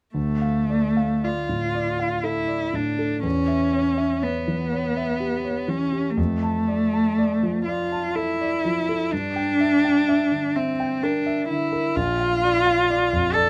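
A single bowed cello carries the melody up front, its rich, expressive tone shaped by vibrato, soft attacks and gliding portamento as it sings between A3 and A4. This is a romantic classical duo in D minor, yearning and solemn, moving in a rubato 3/4 at roughly 53-67 BPM. The concert grand piano accompanies from 0.1 s, its warm sound reaching down to a deep Bb1 in the bass and up to A5, with a present, polished character and a short sustain. The harmony passes from Dm through C#dim/E, Dm/F and Em7b5/G before arriving on Bb at 12.0 s; the whole passage is cut from a longer piece. Close, detailed microphones and very little reverb keep both instruments intimate and immediate.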